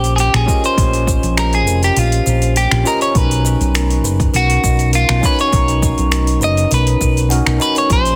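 A twangy, slightly broken-up electric guitar carries the melody with delay up front in this relaxed, smooth sunset chillout excerpt at 101 BPM, over a round, punchy fingered bass, a clean tine electric piano, a woody kalimba with delay ringing in the background, a deep house kit with metallic hats, cabasa, finger snaps and an overdriven snare, and an overdriven electronic kick entering at 0.5 seconds, all moving from Bbm69 to Bmaj7 in light digital ambience.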